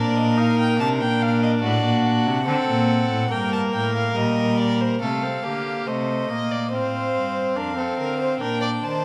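An up-front cello with rich, gut-string tone and light vibrato anchors this solemn, serious baroque-style fugue for string quartet in C minor, moving at 71 BPM in straight 4/4. A close, nasal viola with an airy bow fills the accompaniment, a warm second violin adds a reedy inner line, and the first violin carries the melody in period style, each part bowed by a single player. A wet recital hall reverb surrounds the ensemble, and the harmony turns to C minor at 5.0 s in this brief cut from a longer piece.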